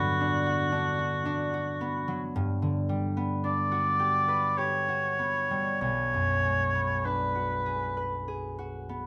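Hazy and wistful, this brief impressionist classical duo drifts in a rubato 3/4, with a warm oboe singing the melody with light vibrato until 8.3 seconds while a ringing, fingerpicked concert harp accompanies and sounds on to 9.1 seconds, the pair captured by close, detailed microphones with light reverb.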